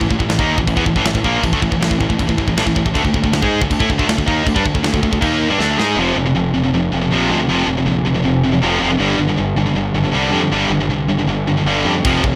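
Epic and aggressive, this heavy metal excerpt charges ahead at 158 BPM in a straight 4/4, cut from a longer piece and heard with little reverb. Two up-front guitars carry the riff throughout, an overdriven electric guitar and a bright, high-gain distorted guitar, both picked across a range from F2 to G#4. Beneath them a fingered electric bass with growly fuzz and overdrive holds the low end from F1 to A2. A tight, acoustic metal kit with a medium-tuned snare, a tight kick, crash cymbal and a rolled-off top drives the opening half, closing it with a fill at 5.6 seconds before dropping out until a brief return at 12.0 seconds. The harmony moves through A5 and D5 power chords in the first section, then shifts to F5 at 6.0 seconds and G5 in the second.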